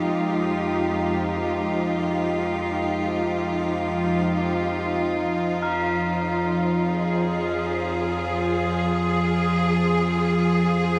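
This dark ambient excerpt opens with everything sounding at once: a tense, string-like drone sits low and up front, bathed in its own reverb, while a lush symphonic cello section holds sustained chords just above it. The drone has a detuned, sawtooth edge with a layer of noise, a slow attack, a long release and vibrato, which gives it an uneasy, grinding quality. The bowed cellos are smooth and even, their rich ensemble vibrato adding body in the middle register. Further back, tubular bells struck with a rawhide hammer ring out solemn, metallic arpeggios, trailed by tape echo. A long plate reverb soaks the whole mix, making the 11-second passage feel dreamy, cavernous and unsettling.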